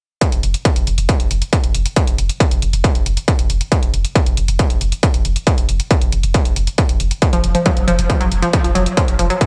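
A straight 4/4 pulse at 137 BPM drives this hypnotic peak-time techno excerpt, cut from a longer piece. A distorted, overdriven electronic kick sits up front and runs from 0.2 to 9.5 seconds, with a layered, overdriven electronic hi-hat alongside it that pumps against the sidechain and carries studio reverb. Underneath, a deep, thick sub bass holds on F1, its saturated triangle tone given a fast attack and long sustain, softened by a low-pass filter and pumping in time. At 7.3 seconds an analog pluck riff cuts in between F3 and Gb3, blending sawtooth, square and triangle waves with a noise layer and ring modulation; it is round yet bright, with a fast attack, short decay, a filter sweep, chorus, tube saturation, delay and its own sidechain pumping. The mix has light reverb and a bright, 1980s-style digital sheen.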